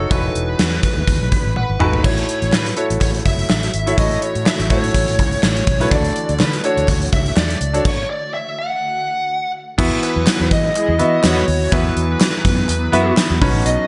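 Lightly reverberant and polished, this 1980s-style pop excerpt in E major at 124 BPM has a romantic, glossy mood, with a smooth, dark overdriven lead guitar carrying the melody over clear concert grand piano, a round, foam-muted vintage fingered electric bass and an up-front gated drum kit with punchy kick and bright cymbals, joined by very quiet crisp group handclaps from 2.5 seconds, a cloudy, evolving granular pad from 3.3 seconds, and brassy synth stabs with chorus and delay sitting in the background at 10.2 seconds.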